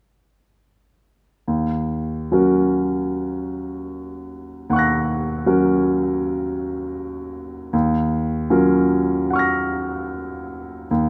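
The rhythm moves freely in rubato over a loose 4/4 pulse, hovering around 70-80 BPM. This is impressionist classical music for solo grand piano in Eb minor, tuned to A4 = 441 Hz, and it feels nocturnal and mysterious. The piano enters at 1.5 seconds and plays through to 11.1 seconds, ranging from Eb2 up to Bb6. It sounds clear and smooth with a vintage character, placed up front in a light reverb. The harmony rests on Ebm7 before shifting to Ebm9 at 7.7 seconds, and a faint mains hum sits beneath this short cut from a longer piece.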